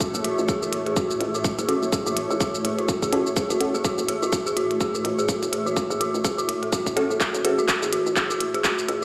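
A short cut from a longer minimal techno track opens at once with a tight, layered electronic kick sitting up front, a clicky, overdriven drum kit of handclaps, hi-hat and shaker, and a granular cloud pad that hangs as a blurred, evolving haze with a bright shimmer and a sidechain pump. A dark, detuned synth bell carries the riff, its eerie, inharmonic FM tone softened by chorus, phaser and delay, while a hollow, bouncy FM bass knocks low in the mix beneath it. A crisp, detuned wavetable chord stab with a moving notch and filter pluck cuts in from 1.7 to 3.7 seconds and returns briefly at 7.0 seconds, trailing digital delay, as a filter sweep on the stab runs through the whole passage. The mood is hypnotic and cool, with a swung sixteenth-note feel and a steady build-up resting on a single minor chord. A drum fill arrives at 7.2 seconds, and the whole sits in a large, wet studio reverb, as if played on a big sound system in a bare room.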